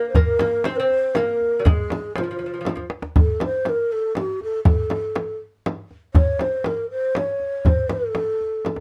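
Persian modal ensemble music at 120 BPM in 3/4 with a hypnotic, longing mood, cut from a longer piece, where a breathy, hollow low ney carries the melody throughout over deep, close tombak and a large frame drum played with soft hands, while a delicate fingerpicked gut-string lute adds a second line until 2.8 seconds, a drum fill from 2.7 to 3.2 seconds leads into the next section, and the whole sits in a dark production with light reverb.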